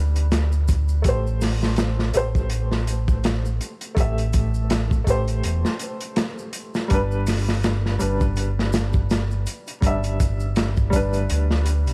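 Trip hop with a hypnotic, melancholic mood, this short excerpt from a longer piece settles into a swung 4/4 groove over slow-moving minor seventh harmony, shifting from Em7 to Am7 and then to Em7/G at 6.9 seconds. A woody, slightly detuned upright piano with short sustain plays the accompaniment from the start, its tone colored by tremolo and tape echo and sitting back in the mix. Beneath it, a round, amped fingered electric bass holds the low end up front. At 0.2 seconds a crunchy breakbeat kit arrives with a tight kick, medium-tuned snare and hi-hat, its saturated, gritty sound dark and rolled-off at the top. Very quiet maracas and a group handclap add a faint live-room texture, while vinyl crackle and small room ambience give the recording a dusty, intimate feel.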